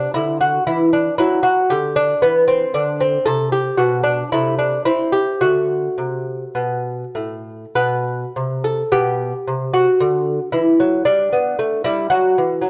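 A bright, delicate solo lute with gut and double strings, fingerpicked up front in a recital hall's moderate reverb, carries this flowing, serene baroque-style dance in G major, a brief cut from a longer piece in 3/4 with a rubato feel at 48-59 BPM, its dark production easing through chords like Am/C and D before settling on G/B at 8.9 seconds.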